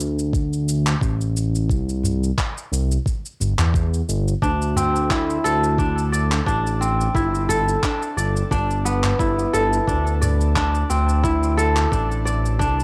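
A smooth, nasal synth bass pumps up front beside gritty, sampler-style cabasa and handclaps, soon joined by a thumpy, compressed kick, all setting an earthy, peaceful downtempo groove at 88 BPM with a light swing. A small, close and dry udu murmurs very quietly from 2.0 to 10.4 seconds, and at 4.4 seconds a crisp, ringing fingerpicked kora steps forward with arpeggios bathed in tape echo and shimmer reverb. The cassette-tape grit and light room reverb give this short cut from a longer piece a homespun feel as the chords move through D5, C and Gadd9.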